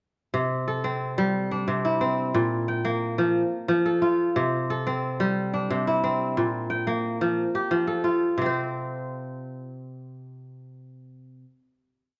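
A solo kora carries this short, complete West African traditional piece, its fingerpicked strings ringing crisp and up front as an interlocking ostinato spans from Bb2 up to G5. The mood is flowing and warm, moving in a straight 12/8 at 119 BPM in C mixolydian, with the harmony circling C, Bb and F before settling onto a final note at 8.4 seconds. A moderate recital-hall reverb surrounds the acoustic instrument, letting its last tones linger until the kora stops at 11.5 seconds.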